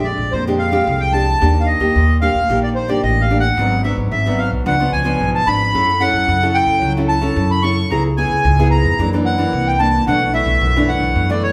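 A reedy, dark accordion with a slow beating shimmer carries the melody up front between C5 and C#6 in this lively, playful samba and choro passage at 111 BPM in a straight 4/4, cut from a longer piece. Beneath it, a bright, fingerpicked classical nylon-string guitar sits up front with the accompaniment while a woody, thumpy pizzicato upright bass on gut strings anchors the low end. All three play together live in one room, bathed in a wet large-studio reverb, moving through jazzy harmony from Bb13 and Ebmaj7 through C#7b9 to a closing Bm11.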